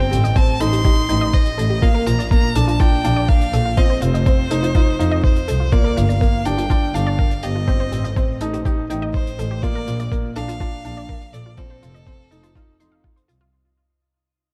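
A dark, warm studio production with roomy reverb frames this cinematic, moving slice of piano-and-strings electronica in a straight four, cut from a longer piece and sitting at the height of a drop that begins fading out from 5.7 seconds. Up front, a muffled, thumpy sampler-style kick drum, compressed and pitched down with a tape-like tint, anchors the groove, while a brushed acoustic hi-hat with a small-room feel stays in the background. A bowed chamber double bass section, played sul tasto with a soft attack and light vibrato, holds the low end close and intimate, breathing with sidechain pumping. A felt-muted upright piano repeats a mellow, short-sustained riff with audible action noise, bathed in shimmer reverb. In the background, a detuned sawtooth analog pluck spins arpeggios through chorus, pumping, digital delay and shimmer reverb, and a single focused violin carries the melody with clear vibrato, trailed by its own delay and shimmer. 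The harmony cycles through Am7b5, Bb, F7 and Gm7.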